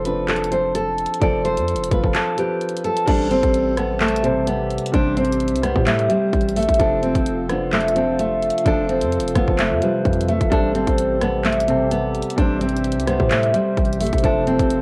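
A half-time trap groove at 129 BPM in A minor sets an eerie, brooding mood, with a hard-clipped kick and bright hats up front, a punchy, heavy 808 bass, a fresh-stringed fingerpicked nylon-string guitar leading over a dark, mellow baby grand, and a warbling, detuned tape-like pad drifting in the background from 3.9 s, all swirled in a cassette-toned spring-reverb haze as the chords alternate between F and Am7, with the kick dropping out briefly just before the first move to Am7.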